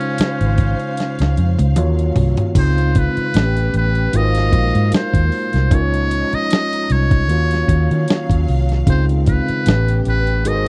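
Soulful and introspective, this short neo-soul and R&B passage at 76 BPM with a lightly swung sixteenth feel sets a buzzy, breathy metal-muted trumpet melody over barky, overdriven tine electric piano and lush bowed strings sitting low in the mix, while a gritty sampler-style drum kit with thumpy kick and fat snare plays a fill from 1.0 to 2.6 seconds and a dark, round, foam-muted fingered bass enters at 0.2 seconds, in a dry, close 1970s-style studio recording.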